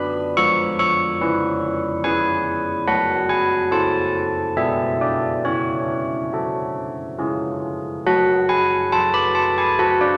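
In a straight 3/4 at 70 BPM, this wintry, solemn classical church-bell tune in F# minor is a short excerpt from a longer piece for solo carillon, whose bronze, ringing tone carries a minor-third overtone and the soft strike of a padded clapper, sitting up front in a wet church reverb with a long tail, moving through a progression that settles onto F# minor as a new section begins at 8.1 seconds.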